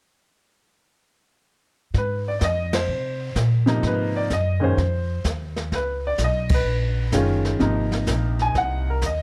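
A clear, up-front upright piano carries the melody in this swinging, warm jazz piano trio fragment. It rides over a growly, woody pizzicato upright bass and a smooth brushed drum kit with dark cymbals and a boomy kick, while the full band hits accents at 2.6 and 6.4 seconds as the harmony moves from Ab13 through Db13 to Ab69 in a dry room.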